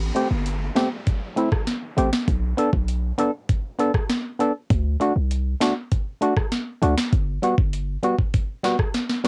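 Bouncy and sultry, this short dancehall excerpt moves at 99 BPM in A dorian, cycling through Am7, Bm7, D and Gmaj7 over a deep, boomy 808-style bass that stops at 8.0 s. A hollow, percussive organ stab with chorus carries the chords up front, while an electronic downlifter sits faintly beneath during the first 4.7 s. The island pop drum kit brings a knocking kick, sharp snare, metallic hats and rim clicks, overdriven and colored by cassette tape, closing on a drum fill at 8.9 s, all within light reverb and a homespun cassette sound.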